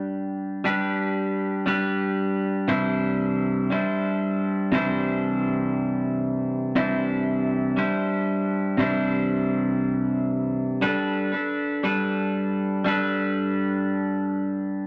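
A clean electric guitar plays alone throughout this short pop excerpt, its picked, twangy tone sitting up front with a compressed, warm character and spring reverb, inside a small, wet-sounding room. At a slow 59 BPM in straight 4/4 and C major, tuned slightly below standard pitch, it moves from G to Cadd9 at 2.7 seconds and on to Gadd9 at 10.8 seconds. The mood is heartfelt and emotional.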